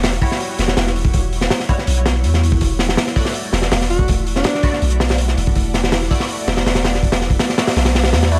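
A crunchy breakbeat kit with a punchy kick and rolled-off top opens this raw, frenetic drum and bass and jungle excerpt at 163 BPM over a deep, sine-toned 808-style bass with tube saturation, while a nasal, band-passed chord stab with phaser, ensemble chorus, 12-bit sampler grit and dub echo sits in the background moving from Em69 to Dadd9/E at 2.6 seconds, and a subtone alto saxophone with its own dub echo plays a brief jazz-style solo phrase from 3.9 to 4.9 seconds.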